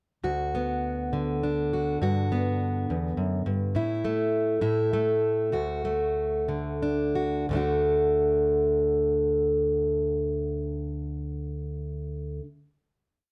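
Warm and nostalgic, this short, complete folk piece in a straight 6/8 features a single fingerpicked, plugged-in steel-string acoustic guitar, placed up front. The alternating-thumb fingerstyle moves through D6, Gmaj7, A5 and D, easing into a slowdown from 3.8 to 7.5 seconds before a final chord rings out until 11.6 seconds. A wet studio reverb gives the concert guitar a soft, roomy glow.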